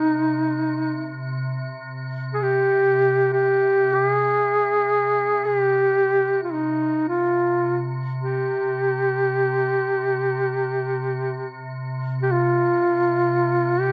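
Caucasian folk lament in free time and C minor, solemn and mournful, heard as a 13.9-second fragment cut from a longer piece. A mellow duduk carries the melody up front between Eb4 and Ab4, its folk-style line shaped by vibrato and scooped notes with a smooth top. Beneath it, a quieter icy glass pad holds a C3 drone throughout, crystalline and airy with a detuned shimmer, slow attack and long release, bathed in chorus and its own reverb, while a moderate recital hall space and close, detailed microphones frame the pair.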